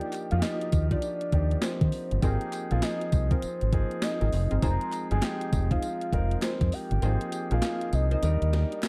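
A bouncy, flirty stretch of new jack swing R&B at 100 BPM in 4/4, its sixteenths carrying a 62% swing, cut from a longer piece and recorded dry and close in a 1970s studio style. Up front sit a gated 80s digital drum machine with a thumpy kick and an overdriven, gated-reverb snare among its claps, hi-hat and tambourine, and a deep, round fingered electric bass that enters at 0.3 seconds. A soft octave-layered synth lead carries the melody with chorus, tremolo and vibrato, while a warm concert grand piano with audible action noise and long sustain supports it. A punchy, detuned polysynth comp adds funky stabs with a filter pluck and moving notch from the background, and a crisp human group handclap sits very quietly underneath. The chords move from Ebmaj9 to Fm7, then Ab69 and Ebmaj7, and the kick drops out at 7.0 seconds.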